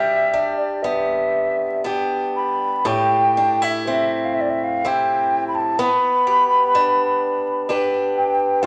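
A wooden flute carries the melody in this short cut from a longer Celtic slow air, its airy, woody tone shaped by vibrato and a crisp attack. The mood is haunting and mournful, moving in a rubato 3/4 at roughly 59-66 BPM, tuned slightly high with A at 443 Hz. Beneath it, a picked swing-style acoustic guitar sits up front with a bright, boxy sound, accompanying from start to finish across the 8.7 seconds. The harmony moves from G to Am7 at 2.9 seconds and settles on G/B at 5.8 seconds. A moderate, large studio reverb lends space to the performance, while a layer of vinyl crackle gives the recording an aged character.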